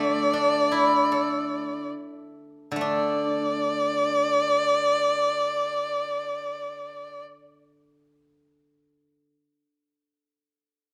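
The rhythm is free and rubato in 4/4, drifting between 64 and 83 BPM and slowing through the opening 2.8 seconds. This festive, graceful piece of Chinese traditional chamber music is heard partway through, tuned slightly under standard pitch to A4 = 439 Hz. A single bowed erhu carries the melody up front around D5, its rich, biting and focused tone shaped by vibrato and portamento. A steel-string zither, plucked with fingerpicks, supports it from D3 to A4 with a bright, silvery, ringing sound, also placed up front. The erhu falls away at 7.2 seconds, leaving the zither alone until 9.3 seconds, with both bathed in the reverberant glow of a recital hall.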